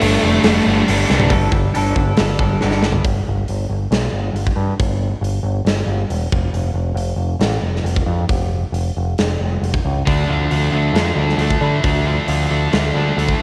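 Lightly reverberant cassette home-recording sound frames this cathartic, dark burst of quiet-loud alternative rock at 136 BPM, where biting lead, crunchy overdriven and high-gain distorted guitars open over a growling picked electric bass and a punchy, up-front big rock drum kit in a bright stone room; a compressed twelve-string electric guitar with tremolo enters in the background at 1.3 seconds, the music drops to bass and drums alone at 3.0 seconds, and the high-gain and twelve-string guitars return at 10.1 seconds over a Dmadd9 chord.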